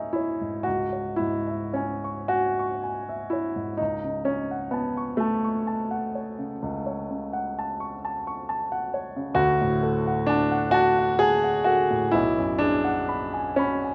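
A polished baby grand piano sits up front in a recital hall, its tone present and warm, ringing into a moderate reverb with a 1.6-second decay. This is a romantic classical nocturne for solo piano, mournful and wistful in mood, moving slowly at 35-45 BPM in dotted quarters within a 12/8 metre. The playing is rubato, so the pulse breathes and bends throughout. The piano spans from B1 up to C#6, covering deep bass notes and a high register. The harmony begins on C# minor, moves to F# minor over a C# bass at 3.8 seconds, opens onto D major at 9.4 seconds, and reaches a half-diminished G# chord over B just before the passage breaks off at 13.9 seconds, as it is cut from a longer piece.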